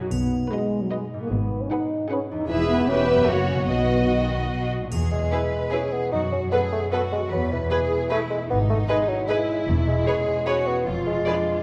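In a brisk 3/4 at 151 BPM, this playful, whimsical cinematic cue in B major, moving to E major at 4.9 s, sets a rich, vibrato-laden violin melody over a second violin line, background violas, a lush cello section and a bowed double bass section, with ringing harp arpeggios, bright triangle touches, a tight, mellow French horn section sustaining chords until 4.5 s and an up-front solo bassoon entering at 5.1 s, all bathed in a wet hall reverb.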